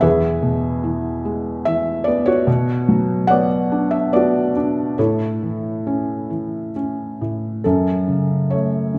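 A felt-muted upright piano carries this short, reflective classical fragment on its own, its soft, mellow tone sitting up front with audible action noise that lends it an intimate, vintage character. Played in a lyrical, rubato manner in three, the piano spans from E2 up to F#5 across the 9-second clip, which is cut from a longer piece. The harmony moves from E to Bmadd9 at 2.5 seconds, then to A at 5.0 seconds, before a new section opens on F#m at 7.6 seconds, deepening the melancholic mood. A wet reverb with a 1.8-second decay surrounds the instrument, giving the sense of a church or concert hall. The smooth, muted timbre and the roomy ambience together make for a hushed, contemplative listen.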